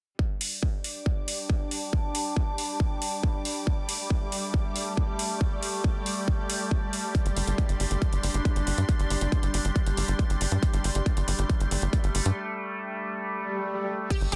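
Psychedelic trance at 138 BPM, driving and alien, where a distorted, up-front kick and a techno kit with metallic hats push under a resonant sawtooth drone with moving overtones, chorus and sidechain pumping, while a smooth bowed string section fades in from 0.2 seconds and drops out at 12.4 seconds for a break, a tight, nasal sequencer bass enters at 7.3 seconds, and an electronic swell leads into a detuned, wave-folded unison pluck on G4 at 14.1 seconds, all in a dense, heavily limited modern master with digital ambience.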